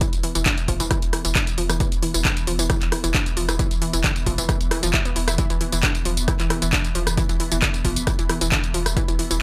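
A dry, gritty hardware sound with digital ambience carries this intense, relentless slice of driving peak-time techno at 134 BPM in straight 4/4, built on an E5 chord, where a punchy, tape-warm electronic kick and an up-front analog drum machine of handclaps, hi-hat, rim click and tambourine, its hats and percussion pumping, sit over a round, overdriven, low-pass-filtered sine sub bass entering at 0.1 seconds, while a nasal, wave-folded, chorused analog pluck riff with tape echo cuts through over a detuned, granular, swarming drone sitting in the background with its built-in reverb.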